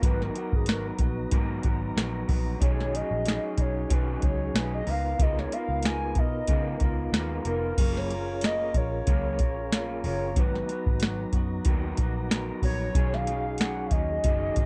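The soft vintage rhythm box sits up front, its deep kick, tonal snare, metallic hats and crash carrying a tape-warm, 12-bit sampler grit through this laid-back, sunny bedroom pop excerpt with a gentle swing. Over it, a hollow, woody synth lead with a clarinet-like voice takes a soft solo for the first 7.8 seconds, its detuned square and triangle tones bathed in lush chorus and analog delay. An electric guitar through a small old amp adds bright, twangy, slightly broken-up picked accompaniment, touched with subtle chorus and vibrato. A mellow, flute-like tonewheel organ fills in with clean chorus vibrato and a hint of key click, while a dark, round, foam-muted picked bass anchors the low end. The harmony drifts through lush ninth, sixth and thirteenth chords, the recording stays dry and close, and the passage shifts into a new section at 7.8 seconds.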